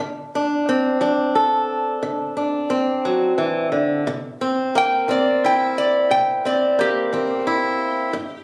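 Captured on a phone in a club room with moderate reverb, this short, soulful and rollicking acoustic country blues piece rolls along at 59 BPM in 12/8 over D7 then C7, with a bright, boxy fingerpicked swing-style acoustic guitar up front from the start, fresh strings and finger squeak audible, before a nasal, metallic resonator slide guitar played with fingerpicks joins with the melody at 4.8 seconds.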